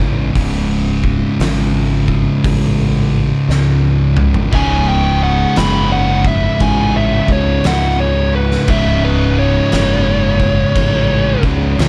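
A slow, swung 4/4 crawl at 58 BPM sets up this brooding, hypnotic stretch of stoner and doom metal, cut from a longer piece and built around a C#5 power chord. Two thick, dark fuzz guitars grind out the riff in the background alongside a bright, growly fingered bass with overdrive. An oversized low-tuned drum kit enters at 0.4 seconds with a punchy kick, fat snare, shadowy cymbals and a saturated, pumping stone-room sound, then rolls into a fill before 4.5 seconds, where a warm up-front fuzz lead guitar with tape echo takes a high solo and a double-tracked overdriven rhythm guitar adds an extra layer of riffing, all within a dark, warm production with light small-room reverb.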